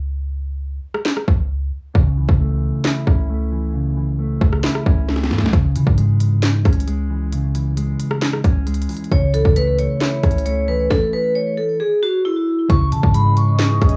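Hard-mallet vibraphone rings out metallic and boxy from 9.1 seconds in this menacing, dark half-time trap excerpt at 134 BPM in C# minor, riding over a boomy sine 808-style bass, an overdriven drum kit with a hard-clipped kick, sharp snare, crisp hats, handclaps and rim clicks, a mellow, compressed electric guitar, and a detuned, evolving ambient pad that surfaces at 13.0 seconds, with every part except the bass colored by cassette tape.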